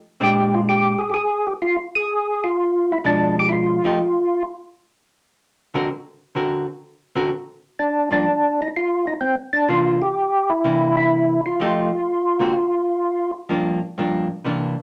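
A wet club reverb frames this swinging, soulful jazz excerpt at 126 BPM in 4/4, where a fat, up-front tonewheel organ with key click, third-harmonic percussion, chorus vibrato and a slow rotary speaker carries the melody from 0.2 to 4.4 seconds and again from 7.8 seconds, while a dark, clean, picked electric hollow-body archtop guitar accompanies over chords moving from Bb9 through Bdim7 and Daug7 to Gm7, C9 and F9.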